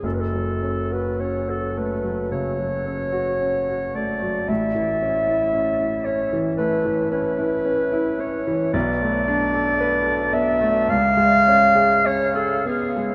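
In a slow, rubato 4/4 that drifts between 47 and 58 BPM, this solemn, elegiac romantic classical duo in F# minor, tuned to A4 = 435 Hz, unfolds over a progression from F#m through A and Bm7 to C#7. A mellow, distant-sounding clarinet carries the melody up front, while a clear concert grand piano with a deep bass supplies the accompaniment, both playing throughout this 13.1-second fragment of a longer piece. A huge, wet reverb places the pair in a vast, echoing space, its long tail hanging around every phrase.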